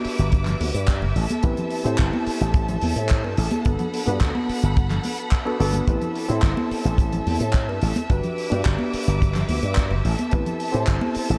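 A small room with light reverb frames this short, sleek and sensual nu-disco cut, taken from a longer piece in a straight 4/4 metre. Up front, a tight, dry kick and a punchy, growly slap bass pushed through an envelope filter drive the groove, with the bass sitting low and prominent in the mix. A damped 70s drum kit with a rolled-off top adds handclaps and hi-hat, while hard-hand congas bring a crisp, acoustic snap from the room. A barky, reedy electric piano, lightly overdriven and coloured by lush chorus, tape echo and a low-pass filter sweep, carries the accompaniment across the whole clip. Above it, a close, intense studio string section holds bowed chords with vibrato, pumping under sidechain as the harmony cycles through Em7/G, Am7 and Gmaj9.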